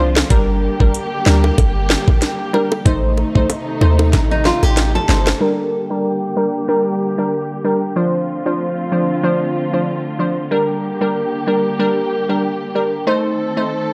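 Dancehall excerpt in G minor at 94 BPM with a bouncy, tough swing: a glassy, crystalline wavetable pluck with chorus and a dark, woody bowed string section carry the Gm, Adim and Dm7 chords throughout, while a deep, boomy 808-style bass, a knocking, sharp-snared island pop kit and tight, high-tuned bongos drive the opening until the kit's fill from 4.1 s, during which, from 4.3 s, a bright fingerpicked nylon-string guitar with tape echo adds brief arpeggios before the rhythm drops out by 5.4 s and a filter sweep carries the pluck and strings onward in a dry, gritty recording with studio reverb.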